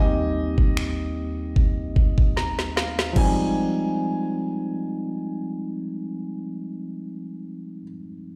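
Moody and late-night, this contemporary R&B fragment from a longer piece moves at 75 BPM in F minor with a gentle sixteenth-note swing, as a bright, barky tine electric piano carries the up-front accompaniment and a clear, intimate baby grand piano with audible action noise and tape echo sings a high melody. An electronic, produced drum kit with a knocking kick, woody snare, finger snaps and crash cymbal sits up front from 0.6 s, adding a fill alongside an electric piano fill before dropping out at 3.4 s. The harmony shifts from Cm7/Eb to Fm9 at 3.2 s, and the whole sounds as if played on a big sound system in a bare room with stone reverb.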